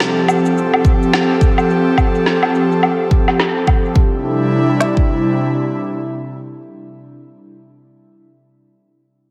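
Organic downtempo in C major at 106 BPM, this earthy, peaceful excerpt swings gently on the 16ths as the harmony moves from F to C at 4.0 s. An airy, breathy pad blending detuned sawtooth and triangle tones with a noise layer sustains soft chords up front, shimmering with chorus and sidechain pumping, while a layered, filtered electronic snare with cabasa and woodblock plays until 3.9 s and an organic electronic kit with a deep kick and a woody, tape-warm snare, re-recorded in a small room, plays up front from 0.8 s until 5.1 s. A lush hall reverb soaks the whole mix in a dreamy, digital ambience.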